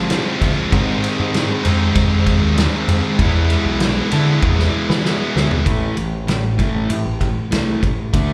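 Quiet-loud alternative rock at 97 BPM in a straight 4/4, this short excerpt from a longer piece feels dark and angsty. It opens with a bright, up-front fuzz guitar and a high-gain distorted guitar playing a riff over a growling, overdriven picked bass, moving through Fm, G# and E. A loose indie drum kit sits distant and roomy, with a punchy kick, a medium-tuned snare, toms and dark ride cymbal, its top end rolled off, and a drum fill runs from 4.4 to 5.7 seconds. At 5.7 seconds the high-gain guitar drops out and a twangy, compressed twelve-string electric guitar slips in behind with clean arpeggios on an A5 chord while the fuzz riff and bass carry on. The whole thing sounds like a live gig caught through the venue's PA, with a touch of club reverb and a faint mains hum underneath.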